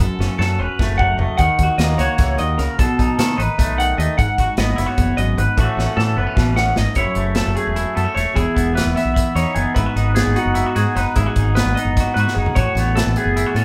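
This short excerpt has the immediate, room-filled sound of a band playing live together in a studio, with a moderate ambience around the instruments. It is intricate, bright math rock with a Midwest emo sensibility, moving in an odd 7/8 metre with a straight feel. A clean, twangy electric guitar sits up front with chordal accompaniment, while a compressed twelve-string electric guitar spins bright arpeggios high above it. A punchy, direct fingered bass anchors the low end, and an acoustic drum kit with a punchy kick and medium-tuned snare drives the piece, working across hi-hat and toms with fills at 0.2 and 5.8 seconds and again near 12.3 seconds. The harmony favours colourful extended chords, passing from F#m through sevenths and a ninth to close on an A69 as the second section unfolds from 7.0 seconds.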